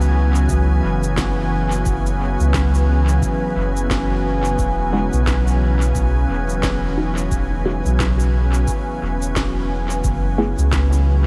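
A loping 4/4 groove, swung on the sixteenths, carries this spacious, meditative slice of ambient dub, cut from a longer piece. Electronic cabasa and a woody, tape-tinged snare sit low in the mix with dub echo trailing them, while a deep, overdriven analog kick sounds from the background starting at 0.5 seconds. Up front, a round, soft sub bass built from triangle and square waves holds sustained notes beneath a bright, organ-like pad of pure, detuned sine tones with a slow attack, ensemble chorus and its own built-in reverb. At 4.9 seconds a muted, filtered chord stab enters in the background, its short sawtooth plucks coloured by phaser, subtle chorus and dub echo. The harmony drifts from F#9sus4 to Eadd9 and settles on F#m11, and the mix is dreamy and soaked in a huge ambient reverb over a bed of vinyl crackle.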